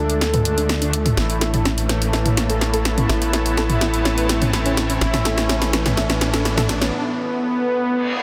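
This dark, dramatic melodic techno excerpt at 125 BPM opens mid build-up over Dm moving to Aadd9: a fat, nasal analog synth brass lead carries the melody through chorus and dub echo, while bold, mellow, wave-folded brass stabs, soft round pluck arpeggios and a bright sweeping resonant pad all undergo filter sweeps. A tight, driving sequencer bass and a very quiet ethereal airy pad fill out the texture, and a punchy, overdriven analog drum machine enters at 0.1 s with a fill across hi-hat, snare and toms, with the snare up front. The drums, bass, pads, pluck, stabs and riser stop at 6.9 s, leaving the brass lead and the background effects to carry on until a reverse cymbal at 8.0 s, all under light reverb and a dense, heavily limited master.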